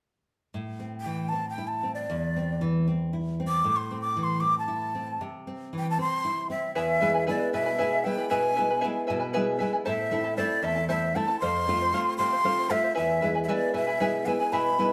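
A stone room's reverb surrounds a small band playing live together in this festive yet wistful Andean folk passage in 6/8, moving at 77 BPM in dotted quarters and cut from a longer piece. A warm, fingerpicked nylon-string guitar sits up front from 0.5 seconds, and a breathy, close-miked large quena carries the melody from 1.0 seconds with a soft attack, vibrato and a somewhat unsteady quality. At 6.8 seconds, a bright, shimmering fingerpicked charango with double strings enters as the harmony moves from A minor to E, then through A minor and F back to E.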